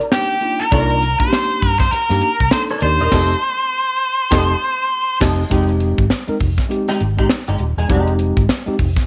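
Funk at 100 BPM in 4/4 with a swung sixteenth feel, cool and funky, moving through Cm9, F9 and Fm9 in a clip cut from a longer piece. A crisp fusion drum kit with bright cymbals, a high-tuned snare and a punchy kick sits up front beside a dark, distorted octave-fuzz lead guitar, which carries the melody until 5.2 s. Mellow tine electric piano stabs, a twangy, compressed clean electric guitar with ensemble chorus, and a round, foam-muted vintage fingered bass fill out the groove, with a band accent from 3.1 s until the second section begins at 5.5 s, heard in a small room with light reverb.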